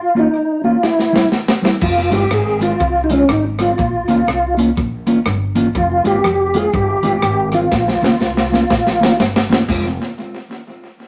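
A swung 122 BPM ska groove in 4/4 drives this energetic, driving passage in F minor, cut from a longer piece and cycling through Bb minor, C and F minor chords. A clear, up-front tonewheel organ carries the melody from the very start, its key click, chorus vibrato and slow rotary speaker giving it a lively shimmer, while a mellow, clean electric guitar plays fingered accompaniment through tape echo. The crunchy breakbeat kit enters with a fill at 0.8 seconds, sounding gritty and saturated in a small room, with dark cymbals, a high-tuned snare, rim clicks and a tight kick, and it plays another fill near the end. At 1.8 seconds the low end arrives: a growly, woody pizzicato upright bass, a slightly broken-up fingered electric guitar riff bathed in spring reverb in the background, and a grainy, compressed cabasa tucked far behind. Wet studio reverb and a rolled-off top end give the whole mix a dusky, vintage character.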